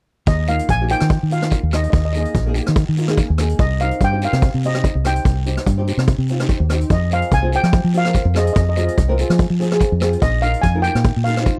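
A lilting calypso groove at 145 BPM in 4/4, with a light swing on the sixteenths, drives this festive, carefree snippet in Eb major. The street-band drum kit sits up front with hi-hat, rim click and a boomy kick, its sound rolled off at the top and placed in a small room, while a raspy guiro adds a close, dry scrape low in the mix. A fingered electric bass, foam-muted and warm, comes through direct and amped, ranging from Bb1 to F3 beneath a double-tracked, fingerpicked nylon-string guitar whose dark, small tone enters at 0.5 seconds. Above them a double seconds steel pan carries the melody between Eb5 and Ab5, its shimmering metallic voice softened by rubber sticks into a mellow sound. The chords move from Ebsus2 through Cm and Fm to Bbsus4, and the whole dry, close recording has the feel of a 1970s studio session.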